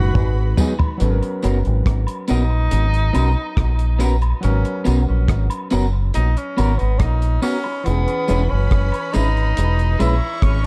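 A distant, roomy tenor saxophone carries the melody with light vibrato, taking a bittersweet, longing solo from 1.0 seconds onward in this slow lovers rock reggae cut from a longer piece, its lines trailed by tape echo. Underneath, a deep dub fingered electric bass sits round, punchy and up front, while a cloth-damped drum kit with a tight kick, rim clicks, hi-hat and toms opens with a fill and stays dry and thuddy, its top rolled off. A slightly broken-up electric guitar through a small old amp plays compressed, picked stabs bathed in lush chorus and tape echo, and a grand piano with deep bass keeps the accompaniment in the background. A woody, bowed string section adds a second line at the very start and returns at 7.9 seconds as the harmony moves from minor seventh and eleventh colours to a major sixth chord. Tambourine and woodblock sit far back in a large-room sound, and the whole production feels dark and warm within a small room ambience.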